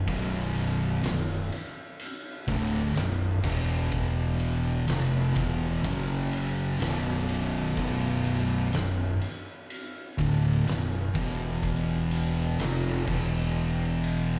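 Hypnotic and heavy, this stoner and doom metal excerpt crawls along in a straight 4/4 feel, a short cut from a longer live performance heard through the club's PA. Two thick fuzz guitars carry the riff together: one dark and distorted sits up front, while the other, mellower in tone, hangs in the background. Beneath them a fingered electric bass growls with overdriven fuzz, sitting direct and amped at the bottom of the range. An oversized, low-tuned acoustic drum kit pounds out the time with a punchy kick, fat snare, and dark crash and ride cymbals, its sound saturated and gritty in a bright stone room that pumps. The harmony rests on Bm before moving through E5, Cadd11 and F#5, then returns to Bm and closes with a brief shift from E5 to F5 and back to E5 near 13.1 seconds.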